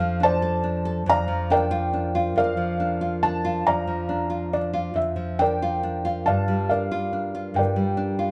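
Tender and heartfelt, this short acoustic folk-pop ballad moves in a slow 6/8 at 46 BPM (dotted quarters), tuned to A4 = 438 Hz and cut from a longer piece. A felt-muted upright piano sings the melody up front, its thick felt giving a soft, dark, mellow tone with audible action noise that makes it feel intimate. Beneath it, a full-bodied, fingerpicked nylon-string guitar plays classical-style accompaniment over F6, Bb/F and, at 6.3 seconds, Gm7, all set in light reverb.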